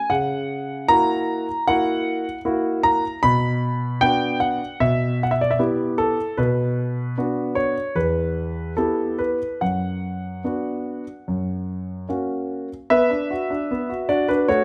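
Restless and dramatic, this classical-period piano sonatina fragment in B minor moves at 75 BPM with uneven beats, its solo concert grand sounding intimate and up front, with deep bass, audible action noise and a natural tone, as harmonies shift between B minor and E minor before an F# chord gives way to a new section at 12.9 s, all set in a moderate recital hall reverb and captured by close, detailed microphones.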